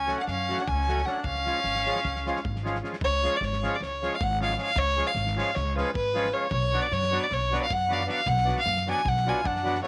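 A restless 9/8 pulse drives this cut from a longer Balkan wedding-band folk piece, played with a straight feel and a virtuosic edge. Up front, a single bowed violin carries the melody with a rich, smooth tone and expressive vibrato that stays even across its upper range. A distant, roomy trumpet in a classical style adds a clear second line with light vibrato and a slapback echo, dropping out at 2.6 seconds and returning at 9.3 seconds. Underneath, a reedy, full accordion supplies the accompaniment while a woody, dark upright bass with gut strings gives a thumpy pizzicato foundation. A loose drum kit sits in the background, its fat snare and punchy kick softened by a rolled-off top and small-room sound. Light reverb and studio ambience surround the band. The harmony shifts from F#m to C# at 1.2 seconds, the music moves into a new section at 3.0 seconds, and the harmony later settles on Bm.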